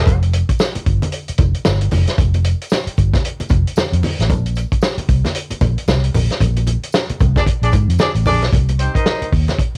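Driving and cool, this funk excerpt moves at 114 BPM in 4/4 with a 60% swing on the sixteenths, cut from a longer piece and shifting from Fsus2 to Bbsus2 before landing on Cm7 at 8.5 seconds. A dark, round, foam-muted fingered bass and a dry, mid-forward soul kit with a punchy kick sit up front, while low-tuned, bright congas and a very quiet, jingly tambourine fill the background. The tight horn section, with light vibrato, octave doubling and a cassette-tape tint, blurts briefly at the start, then returns at 7.4 seconds amid a band accent, all in a home-cassette sound with studio reverb.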